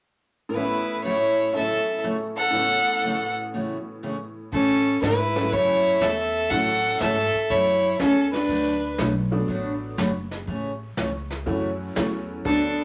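Two clear, up-front fiddles open this cheerful, down-home western swing passage in A major, one carrying the melody and the other a lower second line, both bowed with light vibrato, the lead focused and the harmony earthy. Beneath them, a bright, full-bodied picked dreadnought acoustic guitar and a jangly, metallic tack piano supply the accompaniment over an A6 chord. At 4.5 seconds an upright bass with woody, thumpy gut strings and a vintage brush kit of boomy kick, snare and hi-hat with a rolled-off top join in, settling the 121 BPM swung 4/4 groove. The harmony moves to D6 and back to A6, and the fiddles drop out around 9 seconds before returning briefly near the close of this cut from a longer piece. A small, wet room reverb gives the ensemble an intimate, old-time feel.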